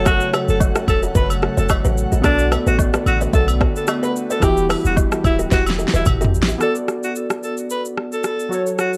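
Afrobeats at 110 BPM in B minor with a smooth, mellow mood and a swung sixteenth-note feel, led by a bright, up-front alto saxophone melody with vibrato over round, detuned analog keys and an airy, breathy pad (both treated with chorus), a deep, boomy 808-style bass, a buzzing, woody kalimba riff in the background, acoustic agogo bells and woodblock, and an overdriven deep house drum kit with a fat snare and metallic hats, whose fill at 5.5 s leads into a sparer closing passage from 6.6 s where the bass, pad, kalimba and percussion have dropped out, the whole brief excerpt sitting in light reverb.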